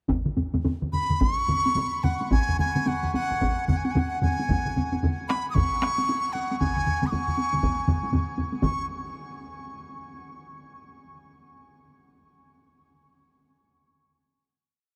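Driving and powerful, this short, complete Japanese traditional taiko piece in 4/4 with swung sixteenths speeds up from 107 to 128 BPM as four heavy-stick taiko parts play together: one compressed and saturated on a repeating pattern, one in a small room on a second repeating pattern, one in a small room on taiko phrases, and one close and dry in the background on taiko phrases. At 0.9 s a dizi enters up front, its bamboo tone airy and buzzing, playing a tongued, straight-toned modal melody with ornaments between F#5 and D#6 in C# suspended pentatonic. The whole piece sits in a vast, echoing space with a huge reverb, and it closes on a final note from 8.6 s.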